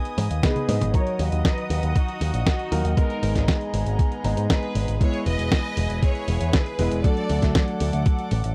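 A dry, close 1970s-style studio sound with light reverb frames this short excerpt of nostalgic, melodramatic italo disco at 118 BPM in a straight 4/4, its harmony moving from G#m through D#m, G#madd9 and E to D. A gritty, thumpy electronic kick sits up front, compressed and re-recorded in a large room, alongside a dusty sampler-style soul kit whose fat snare, hi-hat and toms open with a fill from 0.2 to 0.9 seconds. A punchy picked electric bass with an envelope filter stands forward in the mix and anchors the low end. A dark, mellow grand piano adds smooth stabs with long sustain, while a studio string section holds reedy, gut-string chords with light vibrato in a period style. Above them, a biting, lush symphonic violin section carries an intense melody from 0.4 seconds, shaded by a low-pass filter and tape echo.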